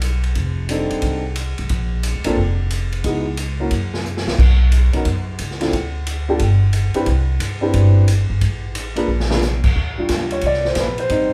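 Woody, thumpy pizzicato upright bass and a natural big-band drum kit with a punchy kick, crash, ride, hi-hat and a medium-tuned snare open this joyful, brassy 179 BPM swing excerpt, joined at 0.7 s by a dark, mellow concert grand piano with deep bass, all up front in a moderately reverberant large studio room, with drum fills around 4.0 s and 9.1 s before the piano takes a brief solo from 9.8 s over an Ebmaj9 chord.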